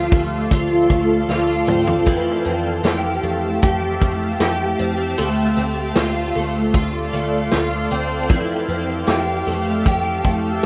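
A shimmering, detuned pad and a bright, octave-doubled twelve-string acoustic guitar picking arpeggios open this floating, ethereal dream pop excerpt. The guitar sits up front with chorus and delay, while a round, foam-muted electric bass plays beneath and a vintage drum kit with a punchy kick and tambourine joins almost at once. The drums play a fill from 1.3 to 2.1 seconds as the chords move between Dm7 and Fmaj9, and a faint, bell-like glockenspiel with delay enters at 2.5 seconds, all in a rough home demo mix with light small-room reverb.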